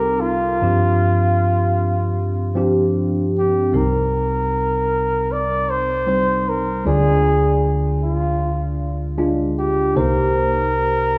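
A mellow flugelhorn carries the melody in a jazz-inflected solo, sitting up front with light vibrato and scooped notes between F4 and D5, its line trailed by a digital delay. This emotional, longing pop excerpt moves at a straight 77 BPM in 4/4, in C minor, tuned to A4 = 435 Hz. Beneath the horn, a tine electric piano supplies the accompaniment from C2 to D5, its warm, clean tone heard through its built-in speakers and colored by a phaser, also placed up front. Both parts play together throughout, as the harmony moves from Cm7 to G7sus4 in the opening bars, then returns to Cm7 at 3.7 seconds, passes through Ddim and settles back on Cm7 at 10.0 seconds. The band plays live in one room, and a wet, large studio reverb with a 1.4-second decay wraps the performance in a spacious glow.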